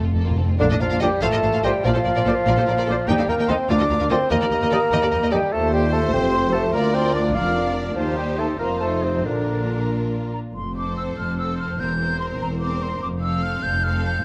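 A lush violin section carries the melody of this spirited, graceful classical-period movement for symphony orchestra, its bowed line rich with expressive vibrato over a flowing 6/8 with a rubato feel. A brief timpani fill, struck with medium mallets, opens the passage before the winds arrive: a pure, soft-attacked silver flute and a distant, roomy oboe trace second lines, while a mellow bassoon and a smooth viola section fill in the accompaniment. A second violin section sits further back with another line, and cello and double bass sections anchor the bass, the cellos with an even, bowed tone and the basses with a more expressive, distant one. French horns hold sustained chords while trumpets add stabs, both dark in tone, until about 10.3 s, after which strings and flute carry a new section. A moderate reverb gives the orchestra the air of a scoring stage, and the recording is cut from a longer piece.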